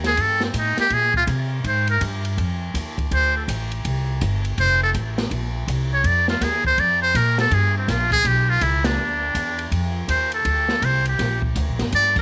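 Sophisticated and swinging, this short cut from a longer small-group jazz piece moves at 163 BPM in 4/4 with swung eighth notes, centred in F mixolydian. A trumpet with a metal mute carries the melody from 0.1 seconds as the up-front soloist, its tone brilliant, buzzy and thin, with light vibrato, scooped notes and a smooth top in a jazz style. Beneath it, a woody pizzicato upright bass on steel strings sits close and present, while an open acoustic drum kit in a studio room supplies ride, hi-hat, snare, crash and a boomy kick at a lower level. The harmony moves through colours such as a rootless F9, Bbsus2, F6 and a Bmadd11 before settling toward Gm, and the full band hits an accent at 8.8 seconds. Studio reverb gives the group a polished sense of space.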